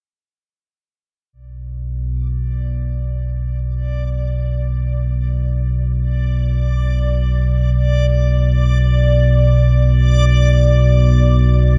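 Floating in free time, this unsettling, desolate dark ambient drone opens at 1.5 seconds with a deep, ominous synth drone that sits up front, its triangle-and-sawtooth tone rumbling in the low register with slow attacks and long, sustained releases. From 2.6 seconds a quieter reversed, swelling texture drifts in high above, dreamy and detuned with a granular grain, while the synth texture fades in across the passage. A light reverb surrounds the piece, which is cut from a longer work.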